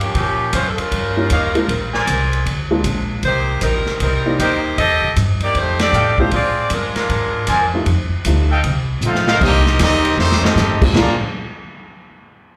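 Energetic and joyful, this big band swing excerpt at 155 BPM in Bb mixolydian opens with an edgy, close-miked saxophone section carrying the melody with vibrato and slapback echo over woody pizzicato upright bass and a drum kit with a punchy kick and dark cymbals, while a slightly detuned upright piano accompanies and a distant trumpet section adds stabs and a band accent lands at 5.7 s, before a brilliant trumpet section takes over the melody at 9.1 s above a soft-attacked trombone section in the background, captured as a live gig through a club PA with moderate reverb.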